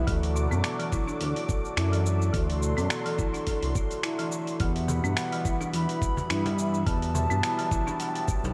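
A lightly swung 4/4 groove at 106 BPM drives this meditative, hypnotic slice of organic downtempo in E minor, cut from a longer piece. A thumpy, gritty electronic kick sits up front beside a dusty, overdriven soul-style kit of finger snaps, hi-hat and shaker, while a smooth gliding synth bass holds the low end with detuned sawtooth and square tones and portamento slides. Both the bass and the sustained chords of a soft-attack analog pad breathe with sidechain pumping, the pad thickened by chorus, and a nasal, breathing hand-pumped harmonium supplies pumping accompaniment through a diffuse ambient delay. A dry, rustic folk marimba struck with hard mallets spins dark, woody arpeggios into its own delay as the harmony moves from D to Emadd9. At 4.6 seconds a distant, airy bansuri enters with a bamboo melody and vibrato, followed at 4.9 seconds by a saturated cajon with faint snares in the background. 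A cathedral-like reverb soaks the mix in a dreamy haze.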